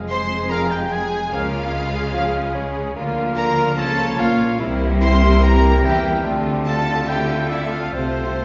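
Heard from further back in a reverberant recital hall with a soft, dulled top, this short excerpt from a stormy, restless romantic symphonic movement surges at 146 BPM in 4/4 with a flexible rubato feel, moving from F minor through chords such as Db, C7 and Dm7. Up front, a lush double bass section anchors the low end beside a focused cello section, while violas and a smooth solo bassoon fill the accompaniment. From 0.1 seconds a gently vibrato-laden violin section carries the melody, joined by a clear oboe and an airy, very quiet flute on a second line, with a further background violin line beneath. At 0.5 seconds distant, roomy French horns and faint trombones add sustained chords and a mellow trumpet section punctuates with stabs.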